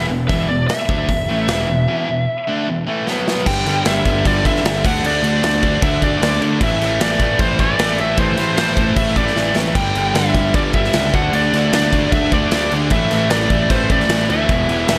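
A biting, overdriven lead guitar carries the melody in this driving, heavy hard rock passage at 152 BPM in a straight 4/4, playing high over two background riff guitars: one high-gain and distorted, the other overdriven with a warm spring-reverb glow, both carrying a slapback echo like the lead. Underneath, a dark, round fuzz bass gives a punchy overdriven low end. At 0.3 seconds a big acoustic rock kit comes in up front, with a punchy kick, a medium-tuned snare, hi-hat and crash cymbal. It throws in a short drum fill leading into the section change at 3.5 seconds and another around 9.4 seconds. From 3.5 seconds a very quiet, double-tracked sludgy guitar adds another riff layer behind the others as the chords move through power-chord shapes and a passing A minor. The whole mix has a big arena sound set in a moderate hall-like reverb, and the clip is cut from a longer piece.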